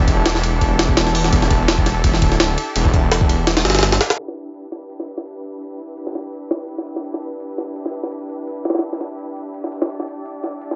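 Softened by light digital reverb and a dulled top end, this dark, atmospheric drum and bass and jungle passage from a longer piece runs at 168 BPM in E minor. Muted, con sordino studio strings hold soft-attack Em7 chords with light vibrato and take a filter sweep from 4.2 s. A thick, beating, saturated detuned saw bass sits up front through the opening drop until 4.0 s. A gritty, compressed, pitched-up sampler-style jungle kit, with a thumpy kick and high-tuned snare, pushes forward with a slight swing.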